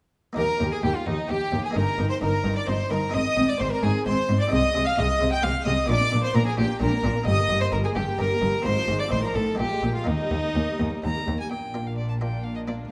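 A muted, lute-like buff-stop harpsichord sounds first at 0.3 s, and the strings join a moment later in this festive, lively baroque-style concerto movement in Eb major at 130 BPM in 3/4, cut from a longer piece: a rich, up-front solo violin carries the melody over one violin section also playing a melody line and another playing a second line, a dark, distant viola section fills the harmony, and a nasal cello section and reedy double bass section hold the bass, with gut-string period tone in the bowed parts and a wet recital-hall reverb around the ensemble.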